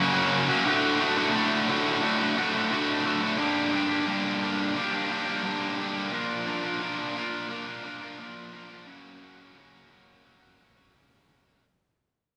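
This rock excerpt moves at 87 BPM in a straight 4/4, with an anthemic yet restless mood and tuning set to A4 = 441 Hz. A single sludgy, bright electric guitar carries the whole excerpt alone from 0.0 to 11.6 seconds. It is picked, overdriven and double-tracked, and sits up front in the mix across a span from D2 to Bb4. The harmony opens on F#, shifts to D at 0.7 seconds, then runs through G minor and Bb before returning to F#. A fade-out begins at 0.7 seconds and carries through to the end of this section cut from a longer piece. Moderate studio reverb and a small-room ambience lend the guitar a close, contained space.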